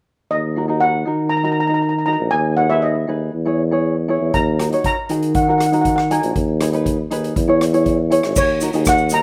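Recorded outdoors with almost dry sound and little room character, this excerpt from a longer calypso piece moves at 119 BPM in a straight 4/4, with a dramatic, driving mood and tuning set slightly low at A4 = 438 Hz. From 0.3 seconds a shimmering steel pan carries the melody up front, its airy metallic lead struck with medium rubber sticks, while a vintage, jazz-style tuba plays the bass just as prominently, warm in tone, with light vibrato and scooped notes. From 0.6 seconds a mellow, thumb-plucked tenor ukulele adds light accompaniment with a slapback echo. The harmony moves through D#m, G#m/D# and C#m/E before settling on D#m7. At 4.3 seconds a street-band drum kit enters lower in the mix, sounding polished and boomy in a big room, with dark cymbals, hi-hat, kick and rim clicks. A grainy, bright tube shaker joins only at 8.4 seconds.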